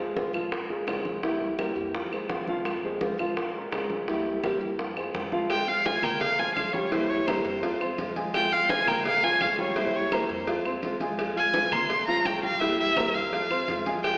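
A fingerpicked nylon-string guitar, full-bodied with audible finger squeak, and a dark, mellow grand piano playing short-sustained arpeggios open this sultry, nostalgic Cuban son and guajira at 169 BPM in F harmonic minor, cycling through Fm, Bbm7 and C7 over a pizzicato upright bass set low in the mix. Tight, high-tuned bongos and cowbell sound distant, while damped, thick-skinned congas and woody, vintage claves sit in the background. At 5.5 seconds a single expressive bowed violin enters up front, rich and boxy with vibrato and portamento, and the recording carries the wet reverb of a church or concert hall with an AM radio tint.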